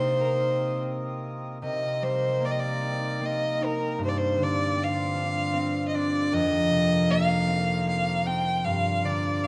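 Set in a slow, rubato 3/4 at about 76 BPM, this short excerpt from a longer Celtic slow air in C minor has a haunting, mournful cast. A single bowed fiddle carries the melody up front, its tone rich and focused with a light vibrato. A bright, ringing concert harp, fingerpicked and also close in the mix, plays the accompaniment in the lower and middle registers. Behind them a pedal harmonium holds sustained chords at a lower level, its reedy, breathing, band-limited sound lending a mellow, vintage color. The harmony moves from Cm7 through G7sus4 at 4.0 seconds and F7sus4 to Gm7 at 8.6 seconds, and all three parts play throughout inside a moderate concert hall reverb.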